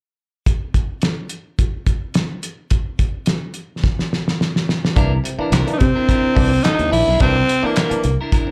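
A straight, strutting funk groove opens on a cloth-damped, thuddy drum kit alone, with a fat snare, tight kick, hi-hat and handclaps, rolling into a fill at 3.8 seconds. At 5.0 seconds the band lands on a C9 chord: an up-front, bright fingered electric bass, stringy clav stabs through a combo amp, and a clean, twangy picked electric guitar with slapback echo. At 5.7 seconds a raspy, gritty tenor saxophone takes the melody with scooped notes and light vibrato, all heard as a live gig through the venue's PA with club reverb.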